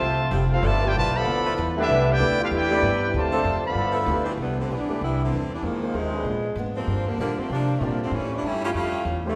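Big band swing jazz in C major, this short cut from a longer piece moves at a brisk 192 BPM in 4/4 with a swing feel, sounding energetic and buoyant. A trumpet section with soft attack and vibrato carries the opening melody up front, shadowed by a dark, distant trombone section on a second line, while a mellow saxophone section holds sustained chords in the background from 0.3 seconds. At about 4.3 seconds the brass drops out and a clear, close-miked saxophone section takes over the melody with vibrato as the harmony shifts from a Cmaj9 into darker Fm7 and Bb7b9 colours before closing on A7b13. Underneath, a woody pizzicato upright bass sits up front, a very quiet picked ladder-braced acoustic guitar adds boxy accompaniment with audible finger squeak, and an intimate baby grand piano joins at 1.8 seconds with its action noise faintly audible. The whole band sits in the generous reverb of a church or concert hall, giving the ensemble a roomy, polished sheen.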